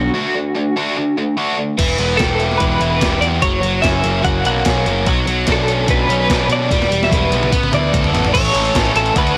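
Restless and bittersweet, this short indie rock excerpt drives along at 146 BPM in a straight 4/4. A biting, double-tracked overdriven guitar sits up front with a bright picked riff, while a clean, compressed twelve-string electric guitar carries the melody with tremolo and digital delay. Underneath, a fuzz-soaked picked electric bass adds a thick, overdriven low end that also sits forward in the mix. At 1.8 seconds a gated 80s digital drum machine arrives with a thumpy kick, gated-reverb snare, hi-hat, toms and crash, its sampler-style sound tape-warm and re-recorded in a small room, and it rolls into a fill from 6.7 seconds. The chords move from D through Em, F#, Bmadd9 and Asus2 before landing on A, and the whole recording is dry, blown-out and overdriven.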